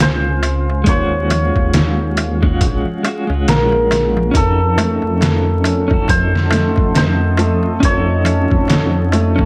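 Gritty, overdriven sampler-style drums with a thumpy kick drive this smoky, melancholic trip hop excerpt at a swung 69 BPM, where a rumbling detuned saw bass sits up front beneath a shimmering, hammered cimbalom melody with dub echo, fingered clean electric guitar with tremolo and tape echo, crisp close darbuka, and a moody chorused pad in the background, moving through Dbmaj7, Ebm11 and F7b9b13, before a soft felt-muted upright piano enters with arpeggios at 4.8 seconds, all wrapped in vinyl crackle.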